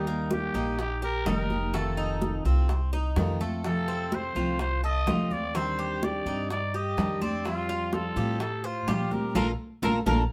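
A growling trumpet opens this sunny, danceable slice of Cuban son and guajira at once, carrying the melody up front over picked steel-string acoustic guitar, Cuban tres and upright bass, with bongos and congas joining in the background at 0.1 seconds. The tempo sits at 126 BPM in a straight 4/4, and the trumpet's raspy, gritty tone, vibrato and vintage character give the tune a pop-leaning solo voice. Beneath it, the woody, thumpy pizzicato bass sits dark and prominent, the dreadnought guitar sounds bright and full-bodied with fresh strings, and the tres adds metallic arpeggios on its doubled strings. The high-tuned hand drums are struck hard, the bongos tight and saturated, the congas thick-skinned, close and dry. The harmony moves from Eb through F7, F, Cmadd9/Eb and Fadd9 before the whole band hits an accent on Bbmaj7 at 9.4 seconds, all played live together in one room with moderate studio reverb in this short cut from a longer piece.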